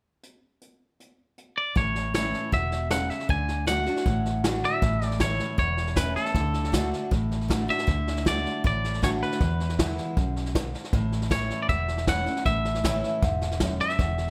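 A straight four-four beat from a vintage brush drum kit, with its punchy kick and medium-tuned snare sitting up front, opens this nostalgic, down-home honky-tonk and classic country excerpt. A bright, twangy electric guitar enters with the clean, compressed melody at 1.6 seconds, and at 1.8 seconds a full-bodied dreadnought acoustic guitar joins with picked accompaniment and audible finger squeak, alongside a dark, round, foam-muted electric bass. Light reverb gives the studio room a natural feel as the harmony moves among A, D and E.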